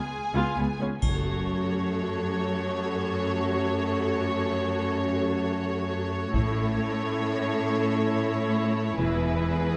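In free time, this dramatic, relentless fragment of an epic orchestral film score opens on a warm, focused violin line over bright, up-front cellos, rich double basses and distant violas, all bowed with vibrato. At 1.0 seconds, a clear, intense violin melody arrives with mellow French horn chords, a taiko ensemble struck with heavy sticks and a close, dry triangle. The taiko and double basses return together at 6.3 seconds, while a moderate scoring-stage reverb frames the lush string sections.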